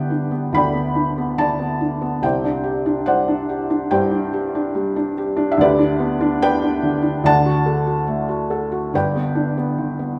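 A felt-muted upright piano, soft, mellow and intimate, sits up front in a calm, tender classical solo piece in G major at a rubato 71 BPM in 4/4, spanning G1 to B5 as it moves from G through Csus2, G/D and D back to G over a moderate concert-hall reverb in this brief cut from a longer work.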